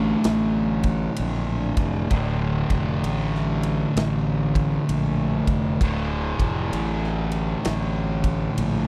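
A slow 65 BPM pulse in 4/4 drags along on swung eighth notes, giving this brief stoner and doom metal fragment a heavy, hypnotic sway. A double-tracked fuzz guitar sits up front with a distorted, picked riff in D minor, holding on a single D minor chord from the start and ranging from D2 to D3. Beside it, a fingered electric bass with overdrive growls low between D1 and Bb1, its tone bright, punchy and amped. The big rock drum kit enters at 0.2 s with a tight kick, a medium-tuned snare and bright ride cymbal, sounding natural and acoustic in a big room. The recording is dry and close in a 1970s studio manner, tuned slightly low to A4 = 438 Hz, and the ominous mood holds steady through the 8.9 s clip cut from a longer piece.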